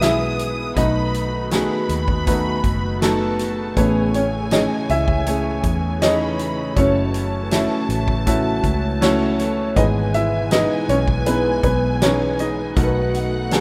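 This pop ballad excerpt moves at an unhurried straight pulse in four, carrying a hopeful, heartfelt mood through a chord progression that settles back home at 9.8 seconds before turning toward B7 at 12.8 seconds. A baby grand piano carries the melody with an intimate tone and audible action noise, while an upright piano, woody and up front with long sustain, fills in the accompaniment beneath it. A violin section sings a smooth, lush second line above, and a very quiet studio string section holds sustained chords played sul tasto with vibrato. A picked dreadnought acoustic guitar adds soft, full-bodied arpeggios, and a dark, foam-muted electric bass gives a round, amped low end. A natural country drum kit with a fat snare and punchy kick keeps time on hi-hat, kick and snare, all set in a lush hall reverb within a rough home demo mix.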